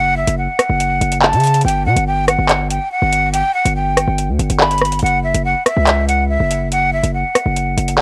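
A half-time drill groove at 142 BPM in 4/4 drives this cold, menacing hip hop excerpt in F# phrygian: a heavy, distorted 808-style bass with a fast attack and a noise layer sits up front beneath a breathy jazz flute melody with expressive vibrato and a cassette-tape colour, while from 0.3 s an electronic drill kit of handclaps, rim clicks and metallic hi-hats, tape-warmed and prominent, joins under light home-recorded reverb.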